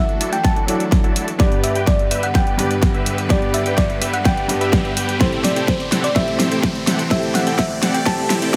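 Under a light reverb and a high-pass filter, this brief cut from a longer festival progressive house track carries a triumphant, anthemic mood. The whole passage is a build-up: a drum fill and a filter sweep run throughout, and a background riser joins at 1.1 seconds. A round, tine-like synth pluck with a gentle, warbling vintage character carries the melody through chorus, cassette-tape colouring and digital delay. A smooth grand piano with 12-bit sampler grit and a dense, detuned supersaw riff both pump with sidechain and echo through delay, while the saw is darkened by a low-pass filter and lush, bowed symphonic strings sustain chords in the background. The overdriven drums hit hard, with a huge snare and hi-hat in a small room and a punchy electronic kick that arrives at 0.4 seconds and sits furthest forward in the mix. The harmony moves from Dadd9 to G and then to Am7.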